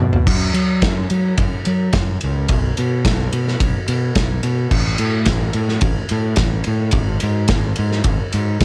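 A fuzzy, overdriven fingered electric bass anchors this short cut from a longer indie rock piece, its round, punchy tone sitting up front from 0.0 s and ranging from G#1 to F#3. A loose acoustic drum kit joins at 0.1 s, opening with a fill and using crash, ride, snare, toms and a tight kick. The kit has a small, pumping room sound, with dark cymbals and a medium-tuned snare placed close to the listener. The mood is carefree yet wistful, moving at 108 BPM in a straight 4/4, tuned slightly high to A4 = 441 Hz. Recorded at home on cassette, the sound is dry with little reverb, giving the pair an intimate, unpolished character.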